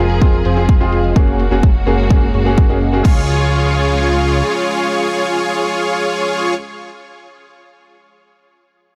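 Set in light reverb and a digital ambience, this euphoric, uplifting festival progressive house fragment is led by a huge, detuned supersaw riff with a sub octave, low-pass filter, digital delay and sidechain pumping, over a fat analog bass with a filter sweep that drops out at 4.4 s. A punchy, overdriven electronic kick sits up front with a very quiet house kit of crash and bright hi-hats, both stopping at 3.1 s, as the chords move from Fm to Gbadd9 and settle on Db at 3.0 s. A smooth concert grand piano with digital delay plays accompaniment in the background, while a distant, lush bowed string section with vibrato and vintage 12-bit sampler grit holds sustained chords, both pumping with the sidechain.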